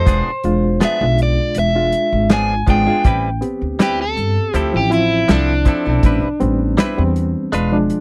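A straight-eighth 4/4 groove with a light sixteenth-note swing carries this smoky, mournful soul blues excerpt, as a punchy kick, medium-tuned snare and hi-hat sit up front beside a woody pizzicato upright bass. A dark, overdriven semi-hollow guitar takes the solo throughout, while a reedy electric piano with fast tremolo and a twangy, compressed clean guitar playing stabs fill the harmony as it moves from E7b9 to Am9 and Dm9. The sound is dry and close, like a 1970s studio session.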